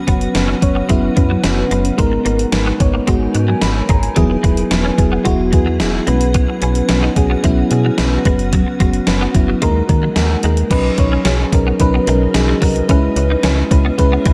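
A soft, round FM electric piano with chorus sits up front from the start, over a blurred, detuned granular pad drifting in the background, in this moody, urgent slice of 1980s-style pop at 110 BPM. Almost at once a snappy, metallic FM bass and a gated digital drum machine join, its thumpy kick and overdriven, gated-reverb snare punching forward with crash and hi-hat, while a clean, scooped electric guitar riff with ensemble chorus and delay hovers further back. Suspended and add9 chords, from F#sus4 through Eadd9 and Bsus2, lead into a new section at 10.7 seconds that moves from Badd9 to C#m7, all set in a light digital ambience.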